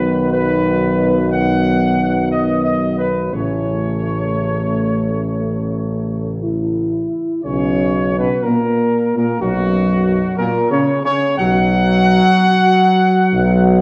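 Classical brass music with a triumphant, regal mood, this slow passage moves at about 57-62 BPM in a straight 4/4 and is cut from a longer piece. A mellow trumpet section carries the melody up front, its soft attack, smooth top and light vibrato giving the line a tight, polished sheen. Beneath it, a dark French horn section and a clear, present trombone section sit back in the ensemble holding sustained chords, while a warm, roomy, distant-sounding tuba anchors the bass with a gentle glow. The harmony moves from B to A at 3.3 seconds, and the second section, beginning at 7.5 seconds, rests on an F#add11/B chord. A recital hall reverb with a 1.3-second decay wraps the brass in a dusky, spacious production.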